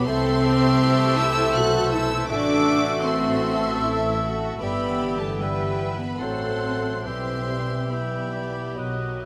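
A dark, softly bowed violin section carries the melody sul tasto with light vibrato in this solemn, yearning slow romantic movement for symphony orchestra, moving in 3/4 with rubato over chords such as Am/C, Em/G and F#dim/A. An airy, expressive flute sounds from a distance above a mellow cor anglais, a second violin section and a bassoon in the background. A viola section accompanies, while roomy French horns and a clear trombone section sustain the harmony, and a bright harp rings out arpeggios, both of these last two very quiet. Cellos and a double bass section, bowed sul tasto, anchor the bass in an intimate, close sound with moderate scoring-stage reverb, in a passage cut from a longer piece.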